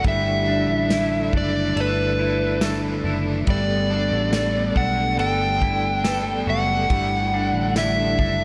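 A dark, overdriven slide guitar carries the melody up front with delay in this ethereal dream pop fragment, over a bright cranked stack guitar with tremolo, a mellow flute-like tonewheel organ with slow rotary swirl, clean hollow-body guitar arpeggios, a round foam-muted bass and a loose indie kit with tambourine and a rolled-off top, while a very quiet woody marimba joins at 2.6 s before Bm7 gives way to Gmaj9 at 3.5 s, all bathed in a lush hall reverb.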